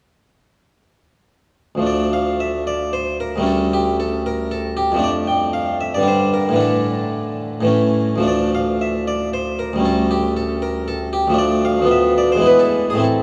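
A solo harpsichord, bright and airy with a single set of plucked strings in the French style, sits up front and carries this solemn, grave baroque-style suite movement from 1.8 to 13.2 seconds. Set in D minor and in 3/4 time, it moves at roughly 100-119 BPM with a flexible, rubato feel that lends the dance a weighty, unhurried dignity. The instrument spans from D2 in the bass up to G5, and its harmony circles between D minor and A7 over a held D before passing through G minor and a suspended A that resolves. Near the close it darkens through a diminished chord over D and comes to rest on E, leaving the phrase open as part of a longer piece. The whole recording is bathed in a vast cathedral reverb with a 5.0-second decay and carries the worn, warbling pitch drift of old cassette tape, giving it a faded, ghostly cast.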